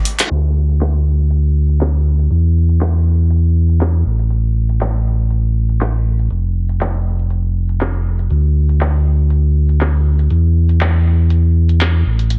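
A deep, full sub bass with an added octave sits up front in this moody deep house excerpt, its sine tone arriving with a fast attack and sustaining through the low register from 0.3 seconds onward. Beneath it, a punchy analog drum machine with a tape-warm, electronic character and the air of a small room carries handclaps and hi-hats at a lower level, entering with a short fill at 0.1 seconds and a band accent at 0.2 seconds. The drums sit in a lightly swung 4/4 groove, with low-pass filtering on the hats, percussion, snare and room sound, and a filter sweep runs across the drums for the whole passage. The overall sound is dry and heavily compressed, with a muffled, radio-like quality from a low-pass filter and its own filter sweep, lending the brief passage a warm, moody feel.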